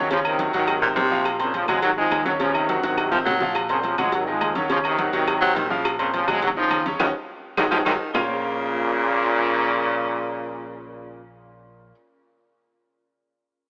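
A brilliant, tightly knit trombone section opens this fiery salsa fragment, carrying the melody up front over a bright, polished concert grand piano and a dark, punchy fingered electric bass. Within the first second a raspy, growling baritone saxophone joins as a second line, its gritty tone and scooped notes set against a smooth top. Behind them, ringing agogo bells and metal-shelled timbales, round low-tuned cowbell and bongos, soft-handed congas and woody, vintage claves drive the groove from the background, with drum fills and a full-band accent building toward the 8.2-second mark. At that point the percussion drops away and the harmony, which has circled between Ebm7 and Ab chords, settles onto a Bbmadd9 as the horns carry on until 11.2 seconds and the piano and bass ring out shortly after. The whole mix sits in a moderate plate reverb and has an AM-radio character, lending the driving performance a fiery edge.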